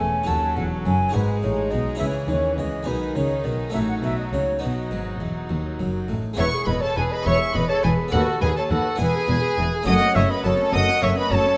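Moderate scoring-stage reverb surrounds this lively, festive baroque-style concerto movement in E major at 69 BPM in 6/8, cut from a longer piece, where an airy, mellow flute carries the melody with a violin section of gut-string tone, a second violin line and dark violas fill the middle over a brilliant, close-miked harpsichord, and a double bass section pairs with a cello section in the background on the bass, moving into a new section at 6.4 seconds.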